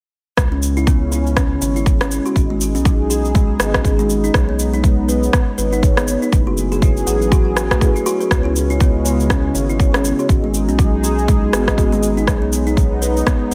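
Afro house with a hypnotic, driving mood and a swung sixteenth-note feel, this excerpt from a longer piece moves through C#m7, G#m7, B69 and F#m11. A punchy electronic kick sits up front with a tape-tinged, small-room character, and a layered electronic rim click and cabasa share that produced, re-recorded sound. A round, deep analog bass with sine and triangle tones and a fast attack anchors the low end. A woody, hollow-box kalimba plays ringing thumb-plucked arpeggios from 0.5 s, treated with digital delay. Behind it, a smooth, warbling vintage pad of detuned sawtooths holds slow-attack chords with chorus, while mellow, brassy synth stabs sit in the background with vibrato, chorus, digital delay and a filter sweep. The pad, brass, bass and kalimba all pump with sidechain compression, and a digital ambience surrounds the mix.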